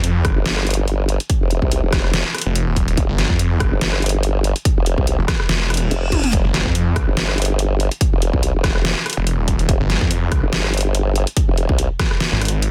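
A snarling, distorted saw bass growls up front through this aggressive, heavy wobble dubstep fragment, alongside a chorused formant-sweep wobble bass, a punchy electronic kick and a dubstep kit with a deep snare, hi-hat, rim click and toms in a half-time swing, while a reverse cymbal sounds from 5.7 to 6.3 seconds over a drum fill at 6.1 seconds, all held dry and dense in a heavily limited modern master.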